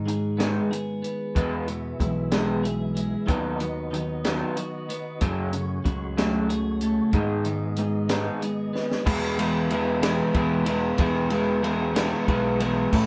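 A bright, twangy twelve-string electric guitar rides up front beside a dark, slightly broken-up electric guitar through a small old amp in this jangly, upbeat indie rock excerpt in E major at 62 BPM in 6/8, backed by a growling overdriven fingered bass, a compact cocktail drum kit with a high-tuned snare and punchy kick, and a tonewheel organ with key click and slow rotary speaker that slips in behind from 1.4 seconds, all played live in one room with a drum fill at 8.7 seconds leading into a new section on E.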